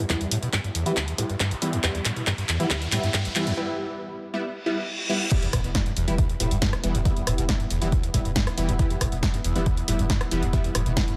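A screaming, squelchy acid line with distortion, chorus and tape echo drives this hypnotic E minor peak-time techno excerpt at 138 BPM, as bright detuned rave stabs pump alongside a punchy, tape-warm kick and an up-front analog drum machine of snare, claps, hi-hats, rim clicks and crash; filter sweeps, a drum fill, a background riser and a reverse cymbal build through a break to the drop at 5.3 seconds, where an impact lands, a thick saturated sub bass enters at 5.5 seconds, and a moody, evolving ambient pad swells in softly at 6.4 seconds.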